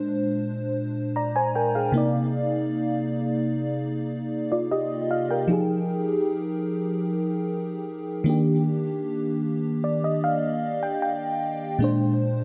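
A lone FM electric piano layered with a soft pad opens this smooth, romantic R&B fragment in Eb major at 76 BPM, its lush, dreamy tone carrying a fast attack that decays under chorus and delay. Up front in a light, digital reverb and a dark production, it moves through rich ninth and seventh chords from Bb9 through Cm9 and Fm9 to Ebmaj7. A piano fill from 9.4 to 11.8 seconds leads back to Bb9 before the cut at 12.4 seconds.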